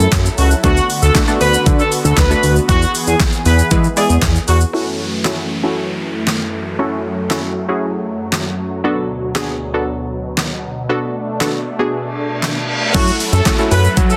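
A driving dance-pop drop in F# minor at 117 BPM opens with a warm, distant horn section carrying the melody through tape echo over a glassy wavetable pluck, a lush detuned pad pumping against the sidechain, a glossy chorused synth bass up front and an overdriven, knocking pop drum kit with handclaps and shaker, then at 4.7 seconds the horns and bass drop out for a filter-swept passage with a downlifter, before a reverse cymbal at 12.2 seconds brings the full drop back at 12.9 seconds in this energetic excerpt from a longer piece.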